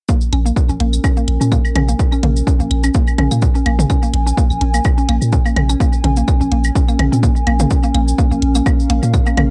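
A punchy, tape-warm electronic kick sits up front in this sparse, clinical minimal techno excerpt at 126 BPM in Bb minor, its 16ths swung at 54% over a single Bbm7 chord, with a deep sine sub bass with a pitch-drop attack pumping beneath it from 0.3 seconds. Layered electronic hi-hat, claves and toms with analog delay, and a grainy, bright cabasa fill out the percussion, while a woody, round FM mallet-like pluck repeats a short riff through chorus and delay. A warbling, nostalgic, lo-fi pad drifts above with slow attack and long release, all captured as a home cassette recording with light reverb, cut from a longer piece.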